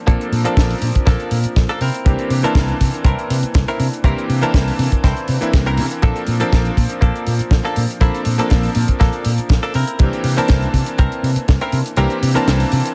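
A lightly swung 121 BPM groove drives this sunny, feel-good nu-disco clip, with a dry, up-front acoustic kick and a tight funk kit of hi-hat and high-tuned snare touched by analog delay, while a punchy, amped fingered bass holds the low end. Above it, a twangy, compressed clean electric guitar picks a riff through lush chorus and delay, and a cutting, vintage electric grand piano with clangy lows accompanies with sidechain pumping, a low-pass filter and delay over Bbmaj7 and C7. The echo-heavy mix sits in a small, lightly reverberant room, and the kick drops out at 12.0 seconds, leaving the other parts to finish the cut.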